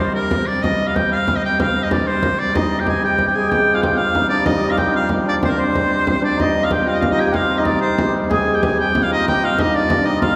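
A bright, vibrato-tinged shawm carries the melody up front alongside a mellow, shimmering hammered dulcimer second line and a dark, nasal hurdy-gurdy drone, with a deep frame drum played with hard hands joining at 0.3 s, in this driving, ancient-feeling medieval dance excerpt in C minor at 125 BPM in 6/8, set in a reverberant concert hall acoustic.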